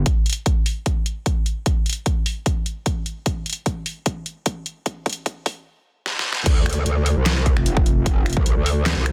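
Menacing and heavy, this short cut of half-time wobble dubstep at 150 BPM in D minor opens with a build-up under a filter sweep, where a punchy, overdriven electronic kick and an up-front dubstep kit of deep snare, hi-hat, handclaps, finger snaps and crash cymbal roll through drum fills from 3.3 seconds, before the drop at 6.5 seconds unleashes a metallic, saturated wobble bass with chorus and overdrive, all sitting dry and dense in a heavily limited modern master.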